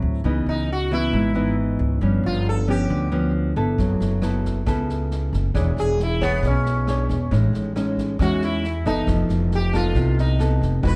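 Breezy and sophisticated, this bossa nova excerpt opens with up-front fingerpicked nylon-string guitar and woody pizzicato upright bass moving through rich chords like C#m9, G7#11 and Amaj9#11. A buzzing, shimmering sitar takes the solo melody from 0.5 seconds, its sympathetic strings ringing with a round tone, and a swinging big-band drum kit with a punchy kick, rim click and medium-tuned snare joins at 3.8 seconds. A moderate large-studio reverb wraps the dark, warm production.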